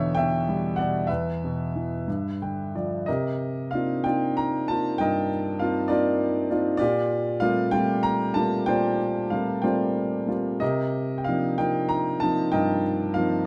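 Dark and melancholic, this lyrical classical solo piano passage drifts in a rubato 6/8 at roughly 59-69 BPM, its grand piano sitting up front with a boxy, intimate tone, long sustain and audible action noise, as a brief fill from 2.1 to 3.1 s carries the music from E minor into C dorian at 3.1 s, where minor-eleventh chords unfold under light reverb on a piano tuned to A4 = 444 Hz.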